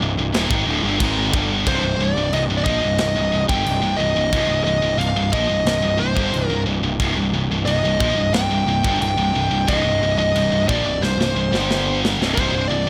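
A straight, steady 4/4 pulse drives this dark, epic heavy metal excerpt, cut from a longer piece. Two distorted high-gain guitars play the riff from the start: one heavy and bright, the other scooped and set in the background, both reaching down to low C. Beneath them, a fuzz-drenched picked electric bass sits up front with a growly, punchy overdriven tone. A tight acoustic drum kit with a medium-tuned snare, tight kick and china cymbal sits back in the mix with a rolled-off top, and a drum fill arrives at 11.0 seconds. From 1.7 seconds a dark, distorted lead guitar carries the melody high above the riff, while a small room ambience surrounds the band and the harmony shifts from C minor to power chords near the close.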